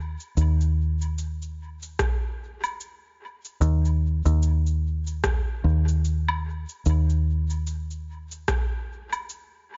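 A slow 74 BPM groove in 4/4, swung at 59% on the sixteenths, sets a meditative, deep mood in this ambient dub fragment cut from a longer piece. A dark, round fingered electric bass starts at 0.0 seconds and sits up front, foam-muted and punchy, with tube saturation thickening its low Eb2 register. From 0.2 seconds a quieter layer of electronic shaker, rim click and woodblock joins, tape-warm and re-recorded in a small room, its hits trailed by dub echo. An analog electronic kick drum arrives at 2.0 seconds, deep and placed up front. The sound is dry, with the top end rolled off to leave a dim, heavy low-end focus.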